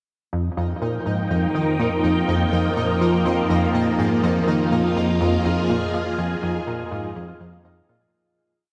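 Ambient, sequencer-driven space music in F minor at 123 BPM, mysterious and cosmic, resting on a single Fm7 chord in a vast, echoing cathedral reverb. A punchy, funky analog bass sits up front with a ring-modulated, filter-plucked 12-step loop that drifts against the bar. Beside it, a bright, swirling string machine with ensemble chorus and phaser holds slowly shifting chords from 0.8 s. Further back, an acoustic Celtic harp fades in on a thumb-plucked, ringing 5-step arpeggio with delay, and a detuned, warbling analog drone holds the root from 1.6 s. Meanwhile a pulsing, tempo-synced gated texture sustains a high note, before the piece fades out from 5.5 s.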